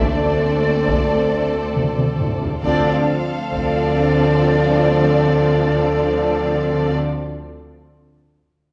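A straight 4/4 pulse at 68 BPM drives this epic, heroic orchestral film-score excerpt in D minor, moving from a D5 chord to Dm7 at 2.6 s. Distant, lush violins carry the melody while an airy flute group and a soft-attack second violin section trace a supporting line, and beneath them expressive violas, a smooth-topped studio string section and very quiet, punchy French horns hold the harmony as dark, roomy trumpet stabs sound. Close cellos with portamento and focused double basses anchor the low end, while a hard-stick taiko ensemble in a large room plays until 4.4 s with a fill from 1.8 s, all set in a reverberant hall.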